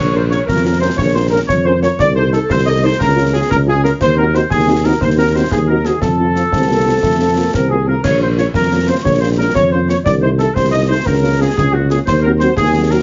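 Stern and martial, this 13-second cut from a longer military-style march for wind band strides along in 6/8 at 119 BPM in Bb minor, with a soft-edged trumpet section carrying the melody over a smooth woodwind second line, a dark French horn section in the background, a mellow, up-front tuba bass, close, dry concert snare, bass drum and dark clash cymbals entering at 0.3 seconds, and a distant, roomy euphonium appearing briefly at 6.5 seconds, all heard through a heavily compressed, radio-like sound with moderate studio reverb.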